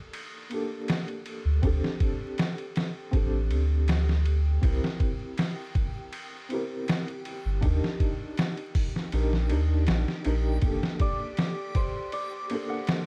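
Dark and smoky, this 80 BPM trip hop excerpt in G minor sets a felt-muted upright piano with tremolo, 12-bit sampler grit and tape echo over a gritty, pitched-down sampler drum kit with a thumpy kick, a deep, round dub sub bass from 1.4 to 10.8 seconds, and a reversed, dreamy swelling texture in the background, moving from Gmadd9 through D7sus4, C7 and Ebmaj7 amid vinyl crackle until a shimmering hammered santur melody with tape echo enters at 11.0 seconds.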